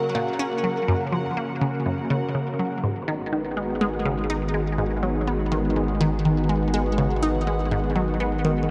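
A lush, thick pad of detuned sawtooth and square waves, treated with chorus and phaser, opens this cosmic, hypnotic piece of sequencer-driven space music. It is joined almost at once by a squelchy, ring-modulated blip pluck riff through phaser and tape echo, while a bubbling stepped-filter texture sits far back in the background. At 2.8 seconds the harmony moves from F# to G#m7 as a round sine sub bass and a very quiet, fingerpicked Celtic harp enter, the harp playing ringing arpeggios, all within a dark, warm production bathed in a huge, wet reverb with a 9.6-second decay.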